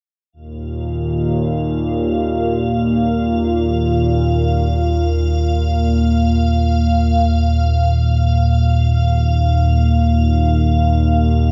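An analog drone sits up front from 0.5 seconds, holding a low Eb-suspended sonority in the Eb2 to Bb2 range with a slow-attack, wave-folded sawtooth and pulse tone that evolves under a coat of chorus. From 0.8 seconds an icy glass pad hovers far above on a single high F5, its detuned unison and breathy noise layer glinting through chorus and shimmer reverb at a much lower level. This ominous, cavernous fragment of dark ambient drone unfolds in free time, tuned to A4 = 437 Hz and bathed in a huge reverb with an 8.2-second tail for a dark production.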